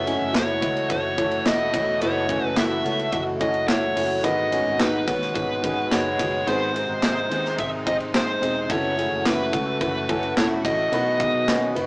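A dark, overdriven lead guitar carries the melody up front in this driving, bittersweet piano-driven pop excerpt, over a polished baby grand piano, a bright detuned sawtooth pad with chorus in the background, a picked steel-string acoustic guitar riff with finger squeak, a round, foam-muted electric bass, and an airy studio drum kit with punchy kick, snare, hi-hat, ride and handclaps entering at 0.1 s, all set in a rough rehearsal-room sound with small-room reverb and saturation.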